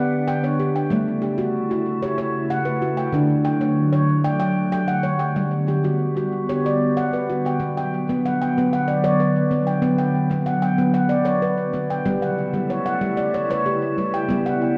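Hypnotic and gentle, this meditative world piece for tuned percussion moves at 188 BPM in eighths, counted in a straight 7/8, and is tuned to A4 = 442 Hz. A handpan of nitrided steel, played with the fingertips and placed up front, rings through arpeggios from start to finish, its airy tone carried by tape echo. Beneath it a glassy FM pad holds sustained chords, its slow attack and long release giving an ethereal, dark cushion thickened by ensemble chorus and its own reverb. The harmony steps through G, A, D and back to G, returning to A at 12.1 seconds, while the music shifts into a second section at 7.6 seconds. A concert hall reverb with a 2.1-second decay surrounds the pair in a dusky, warm production, and the recording is cut from a longer piece.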